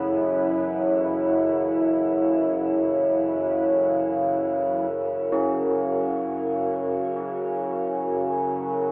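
An overtone-sweeping drone sits up front from the opening moment, its detuned sawtooth and sine tones resonant and slow to bloom, with chorus and its own reverb. Above and around it, a deep, nasal analog pad holds sustained minor chords built from square, sawtooth and triangle waves with a sub octave, bathed in lush chorus and shimmer reverb. Far in the background, a bubbling texture of random filter steps adds a faint, restless sawtooth layer with chorus, built-in reverb and shimmer. At 5.3 seconds, soft carillon bells enter with mellow, bronze arpeggios on a single ringing note, carried by tape echo and shimmer reverb. The whole piece floats in free time within a cavernous cathedral reverb yet is heard through a thin telephone-like filter, leaving this short cut from a longer dark ambient drone feeling desolate and remote.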